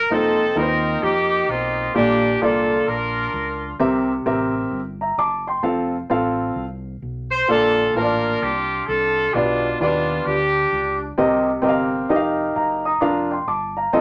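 Reverent yet jubilant, this swung uptempo gospel passage in Bb major moves at 130 BPM in 4/4 and is cut from a longer piece. A clear, up-front horn section with light vibrato and a vintage pop character carries the melody from the start until 3.8 seconds, then returns at 7.3 seconds, while a round, punchy fingered electric bass sits low in the mix and an up-front grand piano supplies accompaniment throughout. The small room ambience gives the whole a wet, intimate feel as chords such as Bbmaj7, G7/B and Cm7 lead to a closing Bb/F.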